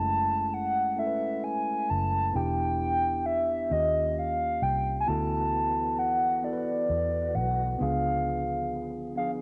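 Warm and sensual, this slow six-eight R&B excerpt moves at 44 BPM, with chords drifting from F#m7 through Em7, D#9 and D69 to C#7b9. A hollow, woody clarinet-like synth lead with chorus carries the melody up front over a mellow tine electric piano tinted by cassette tape and a dark, round, foam-muted fingered electric bass. A clean tonewheel organ with chorus vibrato and a slow rotary speaker slips in behind at 5.1 s, all framed by light reverb in a home cassette recording.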